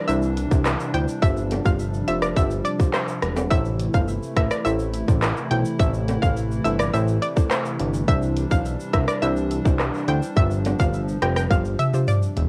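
A bright, round analog pluck carries the melody from the start over a hollow, flute-like pad holding sustained chords; both are colored by chorus and cassette tape, and the pluck also trails an analog delay. This bouncy, hypnotic dancehall excerpt moves at 105 BPM in A minor, cut from a longer piece and cycling through Cadd9, G7sus4 and Am. An up-front island pop drum kit with a tight kick, handclaps, rim click, shaker, toms and warm hats drives the straight 4/4 groove, while a fat, detuned sawtooth-and-square bass sits thick and prominent beneath it. A soft, mellow pluck in the background plays accompaniment, and it pumps with sidechain just as the pad does, while a tube shaker and timbales struck with hard hands add acoustic sparkle low in the mix. The drums close with a fill from 11.5 s to 12.5 s, and the home cassette recording stays dry, with little reverb.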